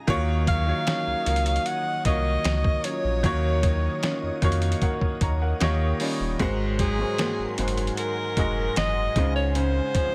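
A breathy, whispered alto saxophone carries the melody up front from 0.5 seconds, its soft attack and jazz-style vibrato giving this moody, late-night contemporary R&B excerpt an intimate, solo voice. Beneath it, a clear baby grand piano plays accompaniment at 76 BPM in a straight 4/4, adding a fill between 4.8 and 6.4 seconds. A dusty soul sampler-style drum kit sits forward with a gritty, compressed sound, a thumpy kick and a fat snare alongside the hi-hat, while a deep, round sub bass holds the low end. A boxy, fingerpicked nylon-string guitar sounds small in the background with its arpeggios, and an ethereal, airy pad with ensemble chorus and built-in reverb sustains chords behind everything, slow to bloom and long to fade. Set in Eb dorian within a small room ambience, the harmony moves from Ebm9 to Eb9, then Ab9, and settles on Dbmaj7 near 9.2 seconds.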